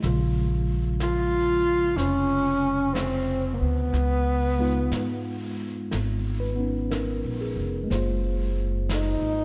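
Heard from further back in a room with a moderate echo-chamber reverb, this short cut from a longer tender, intimate jazz ballad moves at a slow 61 BPM in swung 4/4 in Db major, drifting from Bbm7 through Db13 to Gbmaj9#11. A worn, barky tine electric piano, slightly out of tune and played through its built-in speakers, comps beneath a woody, growly pizzicato upright bass set up front, while a vintage kit played with brushes adds a soft, rolled-off touch on brushed snare and hi-hat. At 1.0 seconds a dark, breathy tenor saxophone enters up close, carrying the melody with whispered subtone, vibrato and scooped notes.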